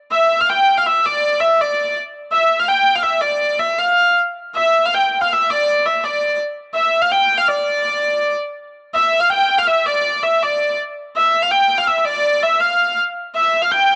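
A home cassette recording with a moderate spring reverb gives this brief medieval excerpt a homespun air. A lone hurdy-gurdy, up front, plays in D minor at 163 BPM in 3/4, its airy, nasal wheel-bowed tone sitting high between D5 and G5 with an earthy edge. The mood is ancient and driving, with the same opening section heard twice before the piece is cut off at 14.0 seconds.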